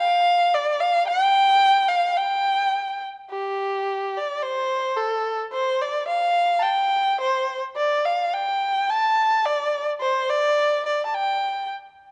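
Chinese traditional music with a graceful, pastoral mood, this short fragment of a longer piece features a single bowed erhu playing solo from the start until 11.7 seconds. The tune moves in a flexible, rubato feel, with a fresh section opening at 3.3 seconds. The erhu sits up front and sounds warm and even, with a smooth top to its tone. Light vibrato and gliding portamento shape its lines. Light reverb surrounds the instrument, and the production has a dark, warm character.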